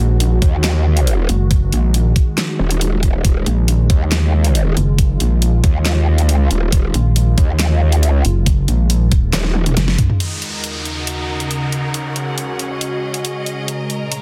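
Heavy wobble dubstep in an aggressive, chaotic half-time drop, where a growling, formant-filtered growl bass and a detuned, pulsing pluck wobble bass sit up front with a knocking electronic kick and a dubstep drum kit of huge snare, bright hats, claps and toms, all over an evolving, phased wavetable pad, until a drum fill at 9.3 seconds gives way at 10.2 seconds to a downlifter and a lush, bowed, sidechain-pumped studio string section alongside the pad through a dense, heavily limited master.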